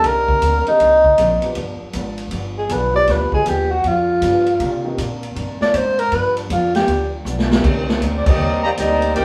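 A small, roomy studio sound with a wet reverb tail frames this swinging, dramatic big band jazz excerpt, cut from a longer piece. A breathy, mellow tenor saxophone leads up front with light vibrato and scooped notes, soloing over a minor-key progression that moves between Cm9 and G7. Behind it, a dark, clean hollow-body electric guitar and a natural-sounding baby grand piano with long sustain comp in the background, while a woody pizzicato upright bass anchors the low end. The drum kit sounds distant and boomy, with a medium-tuned snare, a rolled-off top and a fill that closes the solo just before 7.6 seconds. From there the full band takes over: a bright, loose saxophone section holds very quiet chords, a smooth trumpet section takes the melody up front with a band accent at 8.2 seconds, and a trombone section with light vibrato adds a second line beneath it.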